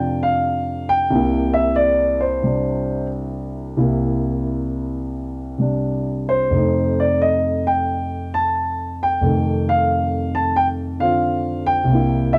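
Warm and swinging, this solo jazz cut from a longer performance features a lone concert grand piano at 90 BPM in 4/4, with swung eighth notes, a loose rubato feel and tuning at A4 = 441 Hz. The piano sounds dark and mellow with a deep bass, sitting up front across a range from C2 to A5 as the harmony moves between F7 and C7. A dry, close 1970s-style studio sound with small room ambience frames the 12.4 seconds of playing.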